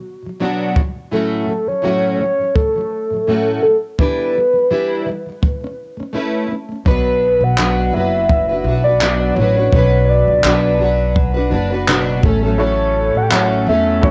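A fingerpicked, double-tracked steel-string acoustic guitar opens this reflective, wistful acoustic pop excerpt in B minor at 84 BPM, its full-bodied tone colored by cassette tape. A compact cocktail drum kit with handclaps and a punchy kick soon joins, along with a round, octave-layered synth lead that carries the melody through chorus, phaser, vibrato and tape echo. A woody, thumpy pizzicato upright bass enters at 6.9 seconds, and a felt-muted upright piano with audible action noise slips in low in the mix at 12.6 seconds, all within a lightly swung home cassette recording in a small room where guitar, drums and synth sit up front.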